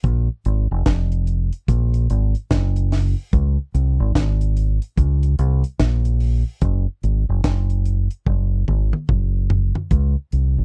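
Roots reggae with a sunny, laid-back mood and a swung sixteenth feel, where a dark, round and punchy fingered electric bass sits up front beside an acoustic drum kit of hi-hat, tight kick, high-tuned snare and toms, all captured in a close, dry 1970s-style studio sound with little reverb, and a drum fill arrives from 8.3 to 9.9 seconds.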